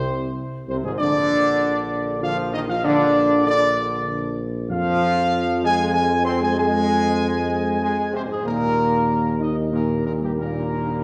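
Triumphant and regal, this classical brass passage in three-four time, cut from a longer piece, sets a dark, up-front trumpet section with light vibrato on the melody over sustained chords from a mellow, close-miked French horn section in the background and a warm trombone section, while a smooth, up-front solo tuba carries the bass, all bathed in the wet reverb of a church or concert hall.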